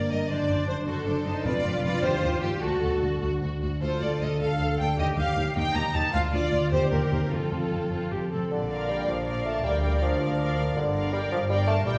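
A focused, up-front violin section carries a second line above a distant, intense violin melody in this restless, dramatic romantic orchestral movement in a rubato 6/8, with clear violas, bright ringing harp arpeggios, a smooth cello section and woody double basses below, a round soft-mallet timpani touch at 1.4 s, and a solo bassoon with light vibrato entering up front at 8.5 s, the whole orchestra set in a reverberant concert hall.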